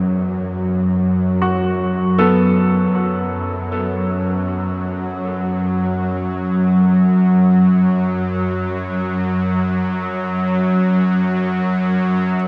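The recording opens in a vast, echoing space, soaked in a cathedral-like reverb whose long tail lets every sound hang in the air. This is a fragment of a longer dark ambient drone piece, and its mood is ominous and dark. At its core is a bowed, string-like drone, nasal and sawtooth-edged, with a noise layer, vibrato and a slow attack, holding low and tense at the front of the mix from the start to 12.5 seconds. A filter sweep moves across this drone throughout, while its own built-in reverb deepens the haze. Softer in the mix, a brilliant yet worn grand piano plays arpeggios with short sustain, their open tone echoed by delay until they stop at 12.4 seconds.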